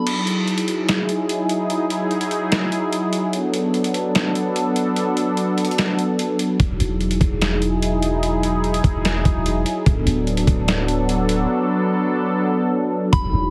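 A half-time 4/4 groove from a gritty, pitched-down trip hop sampler-style drum kit, with its thumpy kick, snare, hi-hat and crash, runs from 0.1 to 13.2 seconds beneath a floating, dreamy stretch of atmospheric cloud-rap cut from a longer piece. An up-front sweeping resonant pad of detuned sawtooth chords with chorus and sidechain pumping sustains Emaj9 and D6 throughout, while a soft FM synth bell with chorus and delay glints briefly at the very start and again near the end. A deep, boomy 808-style bass with a noise layer joins at 6.6 seconds, all heard through a dry, heavily compressed, filtered radio-like sound.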